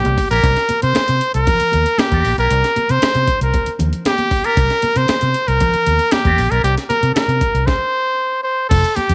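A bright, up-front trumpet carries the melody with a light vibrato and a present, pop-style tone, leading this gritty, strutting funk excerpt cut from a longer piece. Beneath it, a vintage fingered electric bass sounds dark, round and punchy, its foam-muted notes giving the groove a firm bottom. A compressed, sampler-style breakbeat kit adds a thumpy kick, a high-tuned snare, hi-hat and crash, while high-tuned congas played with soft hands sit in the background with a bright, thin-skinned, live-room sound. An electric guitar run through an envelope filter plays twangy, picked accompaniment from 0.3 to 6.6 seconds, treated with a lush chorus and kept behind the other parts. The band hits a stop from 7.7 to 8.7 seconds over a C9 harmony, and the whole is set in light digital reverb.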